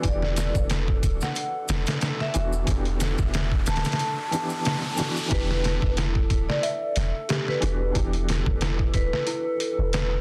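A melancholic, cinematic trip hop excerpt at 91 BPM in E minor opens on a gritty, pitched-down sampler drum kit up front with a thumpy kick, under a deep, round 808-style bass, a dark, ringing vibraphone melody with tape echo, a mellow felt-muted upright piano with tremolo, a warbling, nostalgic lo-fi pad, a very quiet, tense bowed-like drone and maracas in the background, while an electronic riser sounds from 2.0 s to 5.3 s, when the drone and maracas stop and a delicate, bell-like celesta enters with arpeggios through delay.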